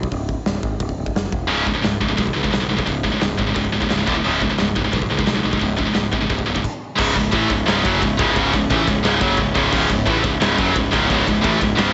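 A growly overdriven bass and a big, dark rock drum kit with a punchy kick open this relentless, epic heavy metal excerpt, joined at 1.5 seconds by two bright, distorted high-gain guitars, the scooped one up front, driving a riff before a brief stop drops into a half-time section at 7.0 seconds where a very quiet chamber string section adds soft, floating sustained chords beneath light small-room reverb.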